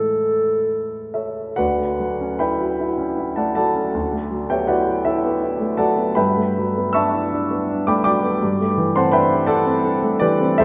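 Rubato 6/8 time moves freely at 47-56 BPM, counted in dotted quarters, giving this luminous, dreamy impressionist classical duo a floating, unhurried feel. A dark clarinet sings its melody up front, holding around A4 before it stops at 1.2 s. The grand piano carries the accompaniment from the opening through 10.6 s, ringing with a clear, present tone and long sustain across a range from Bb1 up to E6. The harmony opens on Amaj7 and shifts at 1.6 s into Em11/D, later moving to Gmaj9 and Am11/G, colouring the music with extended chords. A wet church reverb with a 2.8-second decay surrounds the performance, lending it the spacious glow of a church or concert hall in this short cut from a longer piece.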